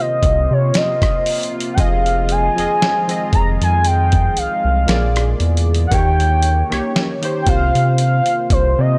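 A dusty, compressed soul-sampler drum kit with a thumpy kick, rim click, snare and hi-hat sets a slow 58 BPM swung 16th-note groove from 0.2 s, joined there by a round, dark analog bass up front, beneath a smooth, gliding portamento lead with vibrato, detuned analog keys with chorus and phaser, and a deep, moody pad with ring modulation and reverb in the background, as this late-night, longing contemporary R&B excerpt in F minor moves through C7sus4, Fm7, Bb7 and Eb7 with a gritty cassette-tape character.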